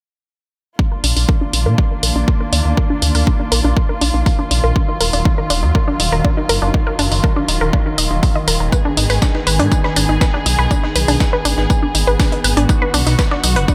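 Melodic techno at 121 BPM in a straight 4/4, this melancholic, dark excerpt from a longer piece moves through Bb, Ebmadd9, Abm and B. A punchy, tape-warm electronic kick sits up front beside a layered electronic hi-hat, both re-recorded in a large room, while a menacing, detuned saw bass with a saturated filter swell pumps against the kick. A lush unison pluck plays arpeggios through digital delay, its ring-modulated, noisy tone shaped by a filter sweep throughout. Underneath, a muted chamber string section holds veiled, con sordino chords with vibrato and a soft attack, and a very quiet analog drone on Eb3 adds a mellow, chorused bed from 1.5 seconds. At 8.7 seconds a gritty, overdriven sampler-style kit of hi-hat, snare and tambourine joins with gated reverb, all within a bright 1980s-style digital production with light reverb.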